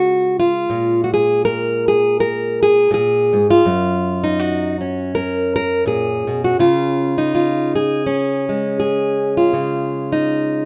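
A fingerpicked, plugged-in steel-string acoustic guitar sits up front in this short, peaceful folk excerpt, playing alone at 82 BPM in Db major with a gentle swing in 4/4, moving through Db5, Absus2, Gb and Db chords across a range from Gb2 to Bb4, its warm concert tone framed by light reverb.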